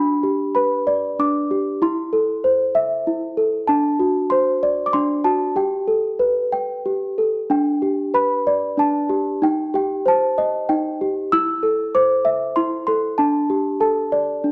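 A small celesta carries this gentle children's lullaby entirely on its own, its bell-like, delicate tone sitting up front and struck with soft felt hammers for a mellow, sweet sound. The mood is sleepy and gentle, moving at 96 BPM in 3/4 with a rubato feel that lets the time breathe. Set in G major and tuned to A4 = 439 Hz, the celesta ranges from D4 up to E6 over a chord progression that begins G, Am, D7, Gadd9. After 7.5 seconds a second section takes a shadowed turn through Cm before resting on Dsus4 at 13.2 seconds, leaving the phrase unresolved. A moderate recital hall reverb surrounds the instrument, and the dark production keeps the 14.5-second passage, cut from a longer piece, soft and warm.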